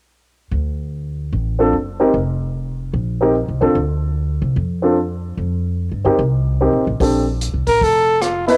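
Relaxed and playful, this short excerpt from a longer small-group swing and bop piece moves at 148 BPM in 4/4 with a lilting swing feel, centred on B-flat major. An upright bass opens at 0.5 seconds with woody, thumpy pizzicato on steel strings, sitting up front in the low register, and a baby grand piano joins at 1.6 seconds with natural, up-front comping, its tone colored by cassette tape. The harmony drifts through suspended and dominant colors, D7, F7sus4, Dm7 and F9sus4, before settling on a lush Bbmaj13 as the second section begins at 7.0 seconds. There the drum kit enters quietly with hi-hat, rim click and a punchy kick in a natural studio-room sound, and a mellow trumpet slips in at 7.7 seconds with light vibrato for a brief solo phrase. Light reverb and a small-room ambience give the whole thing the intimate feel of a home cassette recording.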